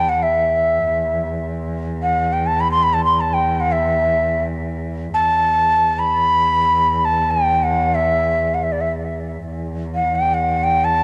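Captured as a home cassette recording in moderate spring reverb, this short excerpt of a Turkish makam ensemble piece in E makam ussak unfolds in free time with a longing, melancholic mood: an up-front, breathy, bright end-blown reed-cane ney carries the melody from D5 to C6 with a straight tone, crisp attack and tape echo, over a single distant, dark, woody bowed cello holding an E2 drone with vibrato through all 11 seconds.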